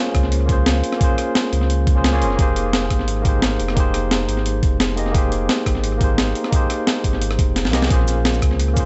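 A straight 4/4 liquid drum and bass groove at 174 BPM drives this dreamy, melancholic fragment in Bb dorian, with a gritty, thumpy electronic kick and a compressed, sampler-style breakbeat kit of hi-hat, rim click, shaker and a high-tuned, up-front snare, both touched by studio reverb, the breakbeat kit also carrying analog delay, and a short drum fill at 7.6 seconds. Beneath it, a deep, round sine sub bass holds sustained, mellow notes, while an up-front tine electric piano, clean yet coloured by vintage 12-bit sampler grit and dub echo, voices Bbm9 and Fm11 chords before returning to Bbm9 at 7.9 seconds. The mix is dry in room sound but echo-heavy, with its highs capped at 8.0 kHz for a soft, hazy top.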